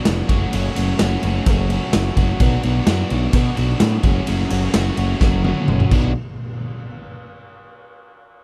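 A straight, driving 4/4 beat comes from a raw garage drum kit, saturated and gritty, with a punchy kick and a medium-tuned snare pumping in a bright stone room, giving this swaggering classic rock passage its push. A double-tracked, compressed electric guitar plays an overdriven riff over F#m and Bm, while a round, growling picked bass, also overdriven, sits up front beneath it. A drum fill from 5.2 seconds rounds off the riff, and the mix stays dry and close throughout.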